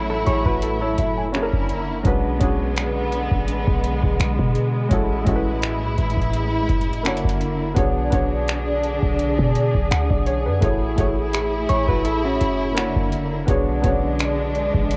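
A lush, woody studio string section sits up front in this moody, sensual contemporary R&B excerpt, holding sustained bowed chords with vibrato through a cassette-tape haze. At 84 BPM in 4/4 with a light 16th-note swing, the piece sits in B dorian, tuned to A4 = 436 Hz, and cycles through F#m9/A, F#7b13 and Bm69. A soft, felt-muted upright piano with a vintage, short-sustain tone adds intimate accompaniment, while an 808-style bass supplies boomy sine tones with a fast attack and mellow decay. A booming analog drum machine enters at 0.3 seconds with a deep kick, metallic hi-hats and finger snaps, tape-colored and re-recorded in a small room. A clean, compressed electric guitar plays picked arpeggios through tape echo only briefly, at 0.1 and again at 11.7 seconds, and the dry home-cassette recording keeps the sound close.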